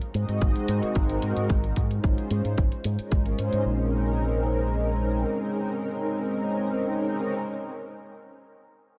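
A smooth analog pad built from sawtooth and triangle tones with a sub octave provides the accompaniment in this groovy, cosmic nu-disco excerpt at 111 BPM in Bb minor, its slow-attack chords moving from Ab9 through Dbmaj9/Ab to Bbm11, bathed in ensemble chorus, sidechain pumping and dub echo until 7.3 s. Beneath it sits a round, dark fingered electric bass with an envelope filter, up front and playing until 5.2 s, alongside a punchy, layered electronic kick and electronic hi-hat with a small-room character, both gone by 3.6 s. The echo-heavy mix carries light reverb.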